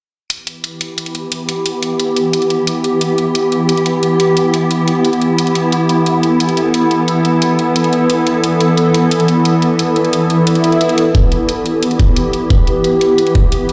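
Overdriven, bright electronic hi-hats tick in a straight 4/4 from the start of this dark, mechanical drum and bass excerpt, with a swarming, detuned drone holding tense, granular chords up front and pumping against the sidechain. At 4.8 seconds a blurred, mellow granular cloud pad drifts in behind it, and an electronic swell at 10.6 seconds ushers in a knocking, layered kick drum at 11.1 seconds. The whole mix sits in a lush hall reverb, as if played on a big sound system in a bare room.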